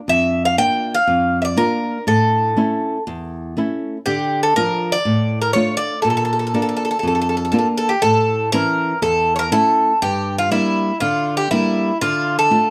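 A metallic, double-strung bouzouki with plate reverb carries the melody from 0.1 s, up front alongside a bright, fingerpicked flamenco guitar whose finger squeaks come through as it accompanies over chords moving from Bb to A and Dm, giving this tense, intense Greek folk passage at 121 BPM in A phrygian dominant a close small-room sound before it shifts at 8.0 s through A and Gm to Dm, cut from a longer piece.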